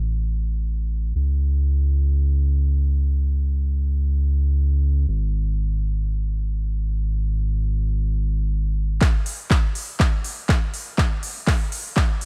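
A straight 4/4 pulse at 122 BPM drives this dreamy, expansive progressive house fragment, where a round, dark, detuned analog bass with sidechain pumping plays alone beneath a filter sweep for the first 9.0 seconds, until a deep, up-front electronic kick and a layered deep house kit of handclaps and smooth, sidechained hats arrive for a build-up and drum fill that runs to 12.3 seconds, in a dry, low-passed mix.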